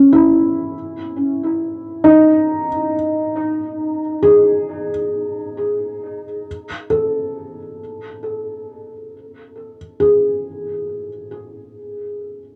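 In free time, this weightless, peaceful ambient fragment, cut from a longer piece, features a solo felt-muted upright piano sitting up front in a wet booth, its soft, intimate tone with short sustain and audible action noise colored by cassette tape and tape echo as it rests on a C#madd9 chord before moving off any chord at 6.5 seconds.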